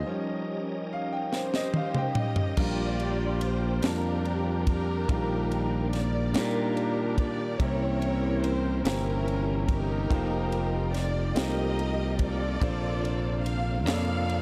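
A growly, up-front fingered electric bass anchors this soulful, uplifting slow gospel excerpt in 6/8, where a brilliant, long-sustaining baby grand piano takes the lead at the start over a very quiet tonewheel organ on slow rotary speaker and a faint French horn section. A dry, tight funk drum kit with bright cymbals enters with a fill at 1.3 s, shortly before the horns drop out at 2.5 s, alongside a dark, woody string section carrying the lush melody through tape echo, the whole sitting in light reverb and studio ambience.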